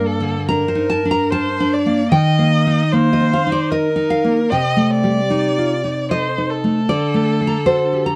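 Yearning and solemn, this brief passage from a longer piece is a romantic duo for violin and classical guitar in G minor, moving in a rubato 3/4 at around 75 BPM and tuned to A4 = 438 Hz. A single bowed violin carries the melody between A4 and Eb5, its warm, expressive tone shaded with vibrato and portamento and a slightly distant quality. Beneath it, a fingerpicked nylon-string guitar supplies the accompaniment, ranging from G2 to Bb5 with a bright, deep classical sound, occasional finger squeaks and a level that sits above the violin. Both instruments play throughout the roughly eight seconds, tracing a harmonic path from Gm through Eb and Am7b5/C to D at 6.9 seconds. Light reverb and a dark, warm production give the performance an intimate, shadowed atmosphere.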